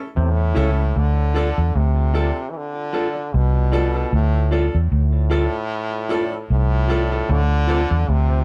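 Reggae with a laid-back, meditative feel, this short excerpt is cut from a longer piece and set in a light reverb, with a round, punchy, foam-muted electric bass up front and a forceful, brilliant trombone carrying the melody from a distance with light vibrato and tape echo. A dark, clean electric guitar with tape echo sits in the background, while a woody upright piano adds open stabs. A very quiet overdriven clav played through a combo amp plays stringy arpeggios at 0.2 seconds, shortly before the harmony moves from A to D minor at 1.0 seconds, and returns at 7.3 seconds.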